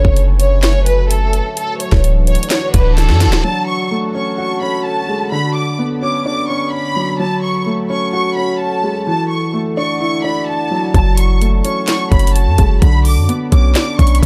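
Set in a digital ambience, this dark, menacing trap excerpt runs at 128 BPM in a half-time 4/4 feel, in F# minor. A lush, bowed violin section carries the melody throughout with vibrato, a soft attack and a distant delay. Beneath it, a deep, detuned sawtooth pad holds sustained chords through a chorus and its own reverb, cycling through F#madd9, Dadd9 and Bmadd9. The opening pairs an up-front trap kit, with its hard-clipped kick, sharp snare, metallic hats and handclaps, with a boomy, sine-like 808-style bass, while a reverse cymbal rises in the background from 2.7 seconds. Drums and bass drop away as a mellow, vintage-toned grand piano enters at 3.4 seconds, and both return at 10.9 seconds to close the passage with the full band.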